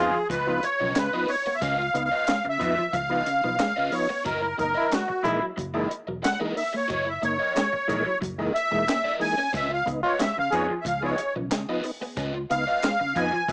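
Funk with a playful, gritty mood, heard in a short excerpt cut from a longer piece, where a reedy musette accordion takes the lead with a solo that runs the whole 13.5 seconds, shimmering, close-miked and up front. Beneath it, a raw garage guitar adds overdriven accompaniment colored by phaser and plate reverb, while a second electric guitar, slightly broken-up and set in the background, plays a riff with a vibrato effect. A percussive tonewheel organ supplies mellow stabs with key click and a fast rotary speaker, and a vintage foam-muted fingered bass gives a round, punchy low end. A compact cocktail drum kit, dry with a high-tuned snare and a punchy kick, adds handclaps and hi-hat, while a brilliant trombone appears only in brief bursts at the very start and at 4.8 and 10.0 seconds, its second line carried by plate reverb and tape echo. The harmony moves from Db9 to Gb13 and back, and the whole track has the small-speaker character of a home cassette recording.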